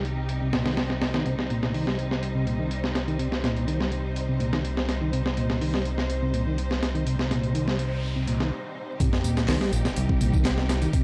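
A gritty, compressed sampler-style breakbeat kit with a thumpy kick and high-tuned snare drives this funky, swaggering 124 BPM breakbeat excerpt in C minor, alongside a fat, detuned analog bass, a mellow tonewheel organ riff with key click and fast rotary, and a distant, lush string section pumping under sidechain, while a background noise sweep and sub drop arrive at 7.5 seconds and layered electronic tambourine and handclaps join at the drop at 9.0 seconds, all in a dry hardware sound dusted with vinyl crackle.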